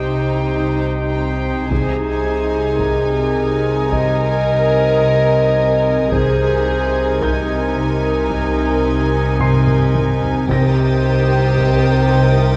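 A cinematic suspense film score in a mysterious, ominous mood, unfolding at a slow, straight pulse and cut from a longer piece. A symphonic violin section carries the high melody with a floating, sul tasto tone, while a dark solo clarinet in classical style and a background studio violin section shape second lines beneath it, over a rich, distant chamber viola section in accompaniment. Cello and double bass sections hold the low end with pure, bowed sustain, a soft-mallet marimba on rosewood bars murmurs a mellow riff in the background, and a very quiet grand piano adds clear high texture with audible action noise alongside a second, floating violin layer. A taiko ensemble played with heavy sticks enters at 1.7 s, very quiet and in a small room, and delivers a drum fill from 9.4 to 10.5 s. The harmony moves from C minor to a suspended chord over C. The whole piece sits in a wet concert hall reverb and carries the worn, warbling pitch drift of old cassette tape.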